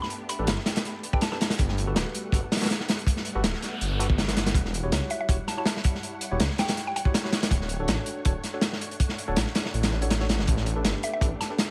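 Vinyl crackle hangs over this dark, raw excerpt of jungle-leaning drum and bass, which moves at 162 BPM in E dorian with a slight swing on the sixteenths. A crunchy breakbeat kit sits up front, its tight kick, medium-tuned snare and hi-hat saturated and gritty with a rolled-off top, while a deep, rumbling detuned saw bass, beating and sustained, shares the foreground. In the background a silky, vintage string machine with ensemble chorus holds sustained chords through A9sus4, Gmaj9, Em69 and Dmaj7, while a worn, slightly out-of-tune tine electric piano adds stabs trailed by dub echo. A woody, round, mallet-like FM pluck, treated with chorus, phaser, cassette tape and dub echo, sounds its melody only in brief phrases: at the start, from 5.1 s, and near the close. An electronic noise sweep passes through the back of the mix from 3.3 to 4.6 s.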